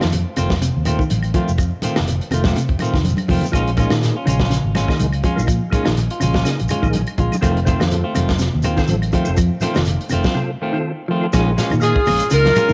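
Driving and funky, this afrobeat excerpt in Bb minor moves at 123 BPM with a light sixteenth-note swing, built on a gritty, saturated breakbeat kit, a dark, round fingered bass, and a bed of woody claves, grainy shekere and ringing congas, while two clean electric guitars play dark arpeggios and picked stabs, the stabs carrying spring reverb. A percussive tonewheel organ with key click, chorus vibrato and fast rotary speaker comes in at 3.5 seconds as the harmony moves from F7 to Bbm7, after a drum fill. Following a break, a punchy, up-front horn section takes the melody at 11.8 seconds, backed by a clear vintage trumpet line, all with the color of a home cassette recording.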